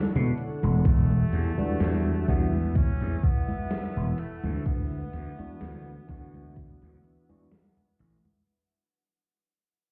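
A thumpy, overdriven electronic kick sits up front beside a growly, punchy slap bass in this woozy, melancholic vaporwave fragment, where a gated 80s drum machine of congas, hi-hat and snare lurks in the background, a lush, detuned sawtooth pad with chorus and phaser holds sustained chords, a barky tine electric piano with fast tremolo enters at 1.6 seconds, and an edgy tenor saxophone with light vibrato and tape echo plays a solo melody, all heard muffled as if through a wall on cassette tape while the whole passage fades out.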